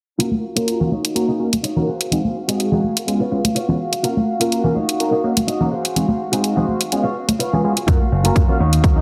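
A lightly swung 4/4 groove of overdriven electronic hi-hats, tambourine and congas pumps from 0.2 seconds in this joyful, sunny slice of filtered disco house, cut from a longer piece. Over it, a funky, detuned sawtooth polysynth comps with chorus, phaser and a plucky filter, while a twangy, clean twelve-string electric guitar plays a riff and an earthy chamber violin section holds bowed chords with light vibrato. A filter sweep runs across the whole passage, low-passing the synth, guitar, violins and hand percussion as they duck and breathe with sidechain pumping. The chords cycle twice through a progression of major-seventh, minor-seventh and dominant-seventh chords. At 7.9 seconds a punchy, overdriven kick and a glassy, tube-saturated slap bass drop in up front, giving the groove its full weight. A moderate hall reverb surrounds the mix, and the heavily compressed, radio-like sound keeps it dense and loud.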